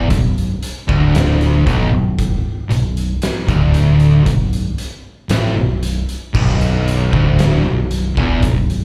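Hypnotic and brooding, this short stoner and doom metal excerpt in B minor crawls at 58 BPM on a single Bm chord, with a thick, fuzz-soaked guitar and a bright, double-tracked overdriven guitar with slapback echo grinding out the low riff, a growly fingered bass adding tube-saturated weight, and an oversized, low-tuned drum kit entering at 0.1 seconds up front with a fat snare, boomy kick, gritty crash and hi-hat, all heard as a live club gig through the venue's PA.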